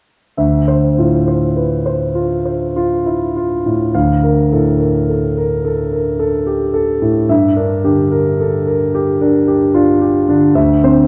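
A concert grand piano, up front with deep bass and long sustain, plays alone from 0.4 s to 11.1 s in this hazy, wistful fragment of an impressionist classical piece in D minor, drifting in a rubato 3/4 at 50-56 BPM through Dm9, Bbmaj7/D, Gm6 and D7sus2 chords inside a moderate recital hall reverb.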